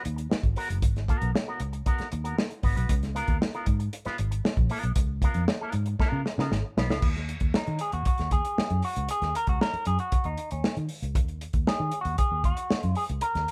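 Captured as a band playing live in one room with light reverb, this cool, driving funk fragment from a longer piece sets a round, foam-muted fingered electric bass and a dry soul drum kit with a tight kick and dark cymbals beneath a bright, twangy envelope-filtered electric guitar over Abm9 and Db13, until a drum fill at 6.0 seconds ushers in a clean electric guitar solo over Ebm from 7.0 seconds.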